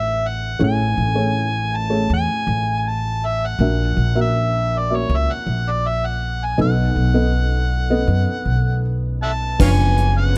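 Heard through close, detailed microphones with a dry sound and little reverb, this short excerpt from a longer piece is a melancholic, heartbroken acoustic folk-pop ballad at 80 BPM in a straight 4/4. An amplified, overdriven harmonica carries the solo melody up front, its gritty, punchy tone shaped by light vibrato, scooped notes and tongue slaps in a pop style. Beneath it, a felt-muted upright piano plays mellow, short-sustained accompaniment with audible action noise, while a pizzicato upright bass with steel strings gives a woody, up-front foundation. The harmony moves through Amaj7, F#7/A#, B7 and finally C#7b9/F#. At 9.6 seconds, a distant chamber string section adds floating, bowed sustained chords with a soft attack, and a soft brush drum kit joins with a tight kick, hi-hat and crash cymbal in a small, natural-sounding room, both playing until the excerpt is cut at 10.4 seconds.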